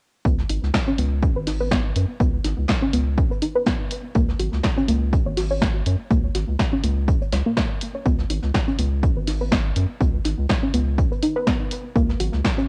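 Recorded at home onto cassette with light reverb and studio ambience, this late-night, moody deep house excerpt moves at 123 BPM in 4/4 with a 55% swing on the sixteenths, cycling through C#sus2 and F#add9 before settling on F#sus2 at 12.0 seconds. A soft, round pluck plays dark arpeggios coloured by chorus, vintage 12-bit sampler grit, cassette tape and tape echo, with sidechain pumping and a filter sweep running across it, above a deep, wave-folded analog bass that sits up front and also pumps from the sidechain. A punchy, tape-warm electronic kick leads the drums, an analog drum machine adds tape-warm hi-hat and snare from 0.5 seconds, and a very quiet acoustic brush kit brings its own hi-hat and medium-tuned snare from the studio room.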